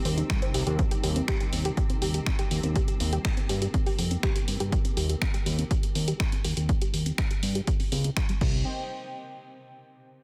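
Lightly reverberant, this dark, melancholic melodic techno excerpt at 122 BPM sets an up-front, layered kick and a tape-tinged analog drum machine of crash, finger snaps and hi-hat, re-recorded in a large room, under a fat, saturated, detuned bass with a filter sweep, a soft, round plucked arpeggio carrying chorus, analog delay and its own filter sweep, a very quiet, moody pad holding Cm and Eb chords, and a swarming granular drone in the background, with the bass, pluck and drone each pumping to the sidechain.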